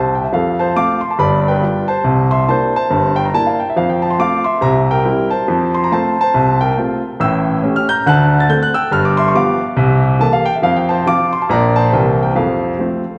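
A generous concert-hall reverb surrounds this recording, with a tail of about 1.9 seconds giving the room a wet, spacious glow. At its center sits a single baby grand piano, warm and up front, its notes ringing with long sustain. The style is stride jazz in F major, moving at a lively 140 BPM in 4/4 with a light swing on the eighth notes, and the mood is playful and swinging. The piano plays solo from the opening moment to the end at 13.2 seconds, ranging from a deep G1 up to a bright A6. The harmony travels from F through G7 and C9, later touching A7, G7 and C13 before a closing turn through Bb and C7 back home to F at 12.4 seconds. This short passage is cut from a longer piece.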